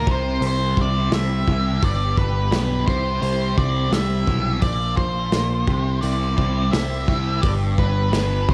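A small room ambience and an echo-heavy mix give this short psychedelic rock fragment a hazy, kaleidoscopic air. It moves at 86 BPM in a straight 4/4, tuned to A4 = 442 Hz, with the harmony cycling through C, G, C, Bb, C and G. A dark, up-front octave-fuzz lead guitar carries the melody through distortion and analog delay, while a double-tracked fuzz guitar plays a distorted riff colored by a phaser. A punchy picked electric bass sits direct and forward in the low end. The crunchy breakbeat kit enters at 0.1 s, with a tight kick, a medium-tuned snare and hi-hat, all saturated and gritty with a rolled-off top. Far behind them, a distant chamber string section holds sustained, bowed chords with expressive vibrato.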